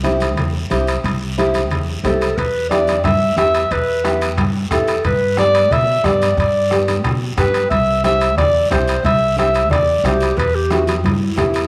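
A wet echo-chamber reverb and small-room ambience surround this passionate, driving cumbia excerpt at 180 BPM in straight 4/4, cycling through C, Em and G chords. Fingerpicked flamenco guitar and woody pizzicato upright bass play from the start alongside ringing, vintage metal-shell timbales, bright thin-skinned congas in the distance and a raspy, saturated guiro. At 2.0 seconds a smooth, soft-attack warm clarinet takes the solo melody up front in classical style, and a soft-beater bombo joins in the background at 2.4 seconds.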